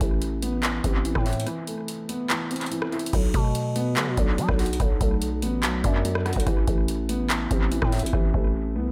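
A booming analog drum machine with a deep kick, metallic hats, handclaps, rim clicks and crash cymbal drives this eerie, brooding half-time trap cut at 144 BPM in B phrygian, with a growling, buzzy 808-style bass up front, a dark, mellow, boxy concert grand piano moving from Amadd9 to Bm7 and back, a break at 1.5 seconds, and delay on the drums in an echo-heavy digital ambience.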